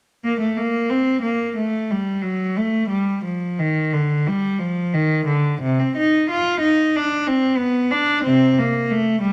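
A moderate stone-room reverb, lingering for about 1.1 seconds, surrounds a single cello placed close and up front in this short cut from a longer classical piece. The music is a baroque-style suite movement for unaccompanied cello in G minor, set in 4/4 at around 90 BPM, with a rubato feel that keeps the pulse flexible. One bowed player carries the whole passage from 0.2 to 9.3 seconds, moving within a range from C3 to F4. The tone is rich and focused, coloured by vibrato, and the instrument is tuned to A4 = 442 Hz. The mood is solemn yet flowing, giving the brief passage a grave character.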